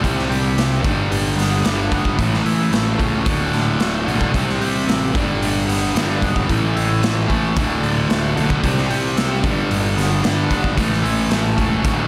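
Quiet-loud alternative rock at 112 BPM in a straight 4/4, this anthemic, bittersweet excerpt cycles through C5, G, A and D5 chords across its 12 seconds. A thick, up-front fuzz guitar drives the riff with distortion and slapback echo, while a raw garage drum kit of hi-hat, punchy kick and medium-tuned snare sounds gritty and saturated in a pumping stone room. Further back, a twangy clean electric guitar picks arpeggios through phaser and slapback echo, and a growly overdriven bass holds the low end, all set in moderate scoring-stage reverb for a big arena sound.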